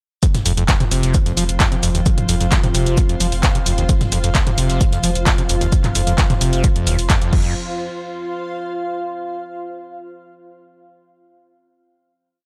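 Driving peak-time techno with a hypnotic, relentless mood, built on a punchy four-on-the-floor electronic kick and an up-front analog drum machine of claps, hats, shaker, toms and crash, with a very quiet, distant acoustic breakbeat loop underneath, while a squelchy, screaming distorted acid line with accents and slides rides over a thick saturated sub bass rumbling between the kicks, an eerie warbling FM drone in the background and a blurred granular cloud pad of slowly shifting chords, both pumping, the band accenting at 7.1 seconds before the pad rings out alone from 7.6 seconds.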